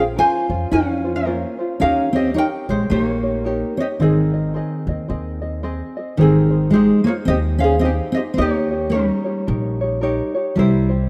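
Hawaiian music in a dreamy, languid mood, this short cut from a longer piece moves at 110 BPM in 4/4 with a swung eighth-note feel, in Ab major. A light, fingerpicked ukulele carries the melody up front, while a full-bodied jumbo steel-string acoustic guitar, also fingerpicked and up front, plays a second line beneath it. A light, thumb-plucked tenor ukulele adds accompaniment, and a woody, thumpy upright bass with steel strings is played pizzicato at the bottom. All four parts play together from start to finish, shifting at 6.2 seconds from a passage built on Bbmadd9, Eb7 and Ab into one moving through Abmaj7 and Eb7 before closing on C7. A moderate, lush hall reverb surrounds the ensemble in a rough home demo mix.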